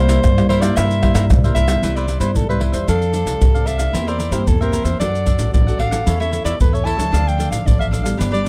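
Sunny and playful, this short slice of samba and choro moves at 113 BPM in a straight 4/4, centered on C major. A mellow, breathy soprano saxophone carries the melody in a smooth-topped, jazz-style subtone solo, riding over a thumb-plucked classical nylon-string guitar with fresh strings and a crisp, picked cavaquinho. Anchoring the low end is an upright bass played pizzicato, its steel strings giving a woody, warm tone that sits prominently in the mix. Just after the start, at 0.1 s, a compressed, saturated percussion section of egg shaker, pandeiro, tamborim and a deep surdo comes in up front. After a brief opening on C7, the music shifts at 1.8 s into a longer passage that moves through Cmaj7, F6, C7/E, D and A/E before landing on Dm. The sound is dry and close, in the manner of a 1970s studio, with just a touch of small-room reverb, and the clip is cut from a longer piece.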